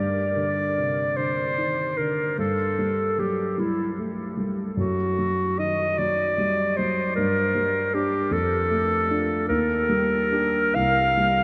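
A clear, softly attacked clarinet sings a melancholic, solemn melody up front, carried over a dark, mellow concert grand with deep bass in a romantic classical duo that drifts in a slow, rubato 6/8 through a vast, echoing space drenched in huge reverb, in a short cut from a longer piece.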